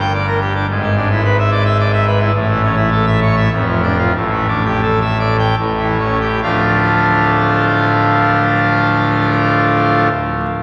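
A dramatic, stormy classical organ toccata in 3/4, cut from a longer piece, where a solo pipe organ on full organ with mixtures sounds majestic and brilliant in a romantic voicing, up front across a deep range from D1 to G5, slowing down from 1.5 to 6.4 seconds as the harmony moves through tense dominant chords to settle on D minor at 6.4 seconds, all bathed in a cathedral's long, wet reverb with a vinyl crackle.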